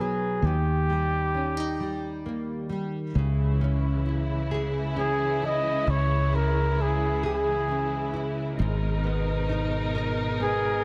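A jazz-styled flugelhorn with soft, scooped notes and vibrato carries the melody from the start, over double-tracked, fingerpicked classical nylon-string guitar and a round, punchy, foam-muted fingered electric bass, all up front in this dramatic, aching six-eight pop ballad at 44 BPM. At 3.1 seconds a distant bowed string section enters with expressive portamento and sustained chords as the harmony moves from D# to C#m, settling on G#madd9 at 8.6 seconds. Light studio reverb surrounds this short fragment of a longer piece.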